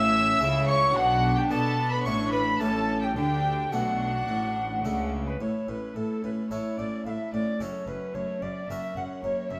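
Baroque-style concerto movement cut from a longer piece, brilliant and lively in a straight 4/4, where a mellow, distant alto recorder with a crisp chiff shares the melody with a period-style gut-string violin section, joined by a dark second violin line, a round, close-miked harpsichord, background violas, and cellos and double basses on the bass, all sitting in a reverberant stone room as the harmony moves to a new key at 5.4 seconds.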